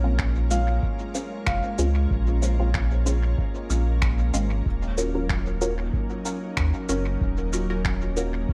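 A round, up-front sine sub bass with tube saturation anchors this deep, meditative ambient dub excerpt at 94 BPM in Eb dorian, moving from Bbm7 to Ebm7 at 4.7 seconds over an analog, tape-warm electronic kick and muffled, pitched-down finger snaps and cabasa thrown into dub echo. Nasal, detuned sawtooth chord stabs pluck through a moving notch filter with phaser, analog chorus and echo, while a pure, bright organ-like pad holds sustained chords with ensemble chorus and its own reverb. In the background, a felt-muted upright piano plays intimate arpeggios with audible action noise and dub echo, all under a light reverb.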